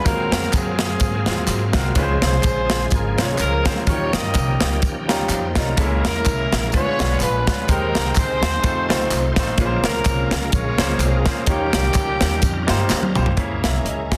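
A swung 126 BPM groove in 4/4 drives this jubilant, reverent uptempo gospel excerpt in Ab major, with a crisp, up-front drum kit, woody pizzicato upright bass on gut strings, and tambourine and handclaps in the background setting the pace while a brilliant grand piano accompanies and adds a fill. A tight horn section with vibrato carries the melody until 13.2 seconds over shouting tonewheel organ chords, lightly overdriven and run through a fast rotary speaker in the background, as the harmony moves through chords such as Ab13/Eb, Dbmaj7, Ddim7 and Bbm9. After a drum fill at 12.9 seconds, a smooth, warbling analog pad with chorus enters at 13.4 seconds, and the piece sits under light studio reverb in a dense, heavily limited modern master.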